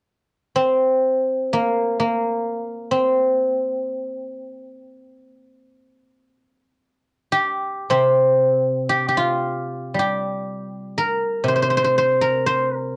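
A solo guzheng, bright and silvery, sits up front in this contemplative, elegant Chinese traditional piece for plucked strings. It is played with fingerpicks in free time and rings across a span from C3 to C5, tuned to A4 = 439 Hz. The instrument enters at 0.6 seconds and moves into a new section at 9.4 seconds before this fragment of a longer piece is cut off at 13.0 seconds, heard through moderate studio reverb with the grain of a home cassette recording.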